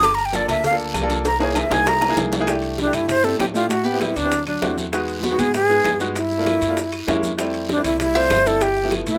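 A breathy silver concert flute sits up front with a crisp attack and an unsteady vibrato, opening this lively, sophisticated Afro-Cuban jazz excerpt at 196 BPM in 4/4 and C major with a solo over the first 2.5 seconds while a drum fill arrives from 1.3 seconds. A clear baby grand piano with short sustain supplies the accompaniment, and a growly pizzicato upright bass gives a woody, steel-stringed foundation beneath it. A dark, fingerpicked nylon-string guitar joins in the background at 2.8 seconds as a second line. The percussion bed is busy: tight, high-tuned cowbell and bongos, ringing congas played with soft hands, a raspy saturated guiro, grainy maracas, and very quiet claves and metal-shelled agogo bells and timbales. The harmony moves through rich extended chords such as Gm7, C7alt, Emaj7, F#9 and G13, heard in a rough home demo mix with moderate small-room reverb.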